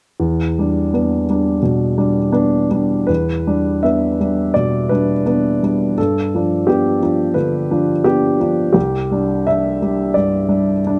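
A warm upright piano opens at 0.2 seconds on an E minor seventh chord, playing alone in a neoclassical minimalist style that feels melancholic and wistful. The tempo sits around 86 BPM in 4/4, though the playing moves with a loose, rubato feel. The piano spans from C2 up to E5, and its woody, intimate tone comes with audible action noise that places the listener close to the instrument. The harmony moves from E minor seventh to a G seventh chord at 6.0 seconds and settles on C suspended second at 8.8 seconds. The sound is dry and up front, with little reverb, giving this short passage from a longer piece a natural, unadorned quality.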